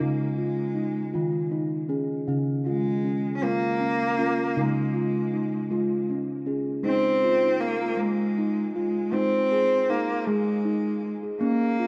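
A round, ringing steel tongue drum struck with firm rubber mallets plays arpeggios from Db3 to Ab4, while a single bowed cello carries a smooth, vibrato-rich melody between Ab3 and Db4, both sounding throughout this 11.9-second clip cut from a longer piece. This gentle, calm world meditation moves at 53 BPM in a straight 6/8, shifting from an Ab5/Db harmony to Ab at 6.8 s. Both parts sit up front under a diffuse ambient delay, with a wet echo-chamber reverb and a small-room ambience lending a 1.8-second tail.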